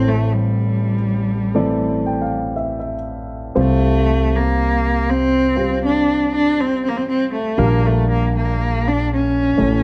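A rich, focused bowed cello carries the melody up front with vibrato in this melancholic, intimate acoustic folk-pop ballad fragment, backed by a dark, mellow concert grand piano whose audible action noise and deep bass lend it a vintage character, and a woody pizzicato upright bass on steel strings, set in a light reverb as the harmony moves from Am to Csus4 and then Gm7/Bb.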